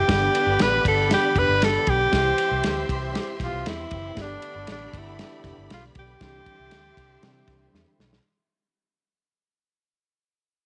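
A straight 4/4 groove from a dry, muffled soul drum kit with tight kick and dark cymbals, anchored by a round, foam-muted fingered bass, drives this uplifting 1960s-style soul fragment, where an up-front, breathy tenor saxophone carries the melody with scooped notes over lush bowed strings, loose jazz-style horns in octaves, a gritty overdriven reed electric piano with fast tremolo, and a very quiet tonewheel organ with key click and fast rotary sustaining chords that move between G and C, set in light small-room reverb as the music fades out and a drum fill arrives at 7.7 seconds.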